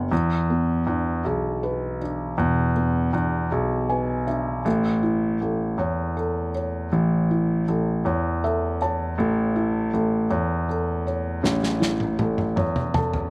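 The recording is dry, with little reverb, and the grand piano and drums sit up front. This aching, dramatic pop ballad moves in a slow 6/8 at 53 BPM in dotted quarters, tuned to A4 = 444 Hz, and the passage is cut from a longer piece. A felt-muted upright piano carries the accompaniment in a dark, thick-felted, mellow tone with audible action noise, adding short fills from 3.5 s, 8.1 s and 12.6 s. Beneath it, a concert grand piano holds the bass with deep, polished low notes and long sustain. The harmony moves from E7 to A. A loose acoustic drum kit enters only at 11.4 s for a fill on snare and toms, its medium-tuned snare rolled off at the top and set in a pumping studio room.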